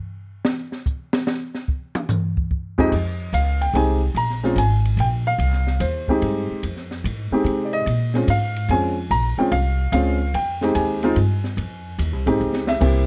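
Swinging at 146 BPM in 3/4 with a cool feel, this excerpt from a longer F minor jazz piano trio opens with the open acoustic drum kit from 0.4 s, its high-tuned snare and boomy kick ringing out, before the dark, mellow grand piano takes the melody up front from 2.8 s and the woody, thumpy pizzicato upright bass enters at 2.9 s over Fm7, Bb7(no3) and Bbm7 changes, all captured close, detailed and nearly dry, with a short drum fill near the end.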